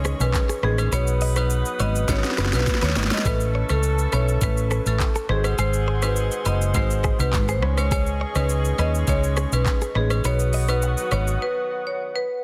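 A round, punchy hollow-body electric bass sits up front in this smooth, mellow afrobeats excerpt in C# minor at 103 BPM, joined by an overdriven, electronic drum kit with a knocking kick, sharp snare, crisp hats, handclaps, rim click and shaker, and a fill from 2.1 to 3.3 seconds. Bright hard-mallet marimba carries the melody over a worn, open baby grand piano, a tight horn section with vibrato and octave doubling, a clean, compressed direct-recorded guitar riff, a hollow, flute-like pad with chorus, and dry agogo bells and woodblock, moving through C#sus2, B, Aadd9 and G#7. At 11.4 seconds the bass, drums and piano drop out for a break, leaving the pad, horns and marimba ringing in a small room on a dense, heavily limited master.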